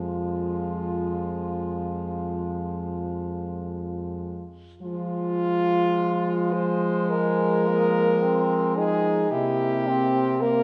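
A French horn carries the melody up front, its smooth top singing between F4 and C5 in this solemn, melancholic excerpt from a longer classical piece for horn quartet in F minor, moving in a slow, rubato 4/4 at around 44-56 BPM. Two more distant, roomy horns fill the middle, one on a second line and one on accompaniment with a light vibrato, while a mellow horn holds the bass from F2 to F3, and the harmony rests on F minor before turning to C7 at 9.3 seconds. A moderate concert hall reverb with a 2.5-second tail surrounds the ensemble, and a second section begins at 4.8 seconds.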